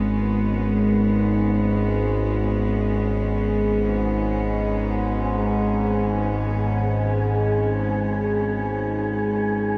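This dark ambient drone piece opens on a warbling analog drone in G# minor, its sawtooth and pulse-wave tones shifting under pulse-width modulation and a chorus effect that keeps it up front in the mix. Alongside it, a bright studio cello section holds sustained bowed G#m chords with light vibrato and an earthy, ensemble character, sitting quieter than the drone and fading out across the clip. At 4.1 seconds an airy, wind-like tuned noise texture drifts in on a slow attack, its breathy sine layer carrying its own reverb. Moving in free time, the music feels cavernous and desolate, with a moderate plate reverb lending the space a 2.7-second tail. This excerpt is cut from a longer piece and runs to 9.8 seconds.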